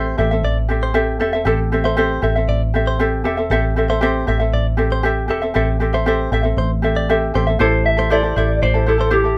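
A light reverb gives this short cut from a longer acoustic pop piece a soft sense of space, and its mood is reflective and wistful. At 117 BPM in a straight 4/4 and A minor, it rests on a single Am7 chord. A fingerpicked ukulele sits up front with a light, warm accompaniment, playing from the start alongside a clean, direct-recorded electric guitar picking arpeggios and a vintage foam-muted fingered electric bass that sounds round, punchy and amped. At 7.6 s a compressed electric slide guitar, played with fingerpicks, takes the melody with a dark, slightly broken-up tone, marking the move into a new section.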